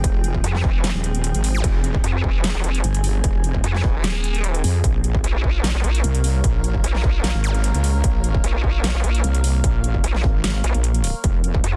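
A saturated, detuned wobble bass anchors this menacing, chaotic slice of heavy wobble dubstep, sitting up front with chorus and overdrive, and from 0.4 seconds a second wobble bass joins with a nasal, resonant formant-filtered vowel sweep. Beneath them a distorted, layered electronic kick hits hard, while the dubstep kit adds a huge snare and metallic hats in a half-time feel. An evolving wavetable pad quietly holds sustained chords, its detuned unison voices morphing under chorus and its own reverb, pumping against the sidechain. The harmony moves from Fmadd9 to Bbm at 4.8 seconds and back to Fmadd9 near the end. Brief sub drops and zaps flicker in the background at 1.5 and 7.4 seconds, and the whole piece has a dense, heavily limited, dry modern sound, cut from a longer track.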